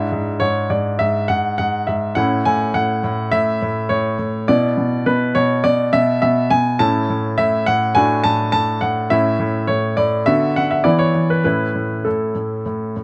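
A clear baby grand piano opens this cheerful, graceful excerpt from a classical-period sonatina in A major, played solo at 103 BPM in 4/4 with a rubato feel and spanning G#2 to A5. The polished, up-front tone is captured by close, detailed microphones with light reverb, and the harmony moves from E7/G# to A, touching D/A and Bm/D before settling on A at 11.4 seconds.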